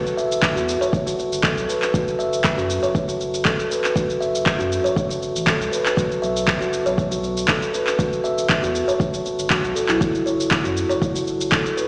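Afro house at 119 BPM in F# phrygian, spiritual and driving, with a lightly swung 16th-note feel, cut from a longer piece. An up-front, woody kalimba plays bright, ringing arpeggios coloured by 12-bit sampler grit, low-pass filtering, digital delay and sidechain pumping, over a round sine sub bass that also pumps, while an overdriven deep electronic kick and crunchy, forward shaker and handclaps carry the groove. The mix sits in a lush hall reverb yet sounds replayed through a big system in a bare stone room with a small-speaker edge, and the harmony moves from an unchorded opening to Esus2 at 8.0 s and F#5 at 10.0 s.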